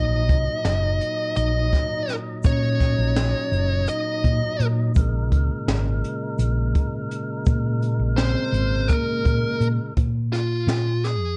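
A distorted fuzz lead guitar, picked and up front, carries the melody through this driving, brooding progressive instrumental in 7/8, breaking into a brief solo at 10.0 seconds just before the cut-off. Beneath it, a round hollow-body electric bass sits close, while a fat tonewheel organ with key click and slow rotary speaker fills out the chords, and a vibraphone struck with hard mallets adds a ringing, metallic second line with delay from the background. Brushes on a small-room kit with a high-tuned snare and boomy kick drive the pulse, a grainy egg shaker hovers behind, and the dry production stays dark.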